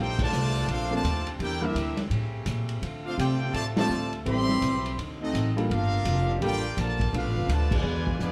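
Big band swing in G minor at 168 BPM, dramatic and swinging, this cut from a longer piece puts a brilliant trumpet section with light vibrato on the melody over a close-miked trombone section carrying the second line with vibrato, while a very quiet, bright saxophone section holds sustained chords. A thumpy, woody pizzicato upright bass sits up front. A muffled, lo-fi vintage drum kit with a tight kick enters at 0.2 s, and a worn concert grand piano in the background comps from 0.9 s to 7.3 s. The band hits accents through rich chords like Bbmaj9, A7b9 and Gm9, all heard from further back in a wet club reverb.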